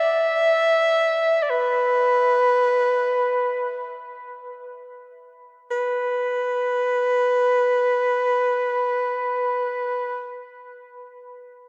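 Meditative and haunting, this fragment of free-time world meditation music, tuned to A4 = 439 Hz, features a solo soprano saxophone, warm and up front, playing between B4 and E5 from 0.0 to 10.3 seconds in a jazz style with light vibrato, subtone, scooped notes and a smooth top, shifting into a second section at 5.7 seconds as a wet cathedral reverb with a 6.0-second decay surrounds it.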